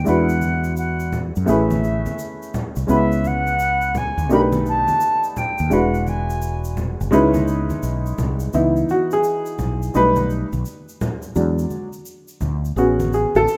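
A concert flute with a pure, straight tone and crisp attack opens this smoky, nocturnal jazz-hop excerpt over a dark, worn upright piano and a round fretless electric bass, all three sitting up front. The tempo is a relaxed 85 BPM in 4/4 with a swung sixteenth-note feel, in C# minor, and the harmony moves through rich chords such as E9, Amaj7, C#m7 and B7alt. The flute plays the melody in a high register and, though up front, carries a slightly distant, expressive quality before falling away at 6.8 seconds. From 8.5 seconds the piano takes a solo over Baug7, E9 and Amaj7 changes, its woody, boxy, slightly detuned sound, short sustain and audible action noise giving it an intimate, lived-in character. Beneath it, a tube shaker and congas add a bright, acoustic pulse from a distant, large-room space, while the amped, direct bass holds the low end. The rough home-demo mix has light reverb and a touch of studio ambience, and the piece is cut from a longer work.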